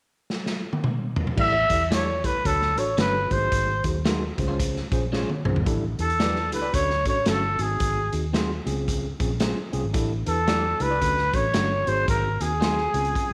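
A growling, raspy trumpet carries the melody with vibrato and scooped notes over a punchy garage drum kit, a round foam-muted electric bass, mellow tine electric piano and a slightly broken-up phaser guitar adding stabs in the background, in this joyful, danceable excerpt of uptempo 1960s-style soul at 112 BPM with a swung feel, the drums opening with a fill before the trumpet, bass and electric piano enter at 1.4 seconds and the guitar joins shortly after, all set in a moderate echo-chamber reverb.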